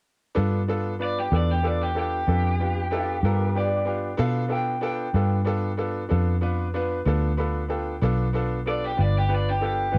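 Swaggering and rollicking, this blues fragment moves at 63 BPM in 12/8 in G mixolydian, opening on a G9 chord. A brilliant concert grand piano with deep bass comps up front and adds a fill at 7.1 seconds, while a foam-muted fingered electric bass sits dark and round beneath, and an overdriven garage guitar carries the melody with a raw, picked bite. From 2.9 to 6.7 seconds a second guitar through a small old amp adds a slightly broken-up, lo-fi line with subtle chorus, all captured as a dry home recording on cassette.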